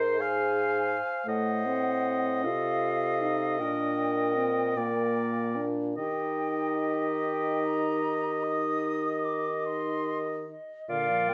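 Set in a moderate large-studio reverb, this slow, tender classical movement for wind quintet unfolds in Eb major at 47-56 BPM in a rubato 12/8: a distant, airy flute with expressive vibrato carries the tongued melody high above a close, up-front oboe's second line, while a vintage-toned clarinet and a warm French horn fill in the accompaniment over a mellow bassoon bass with light vibrato, passing through a brief harmonic darkening before settling onto Eb at 6.0 seconds in this short excerpt from a longer piece.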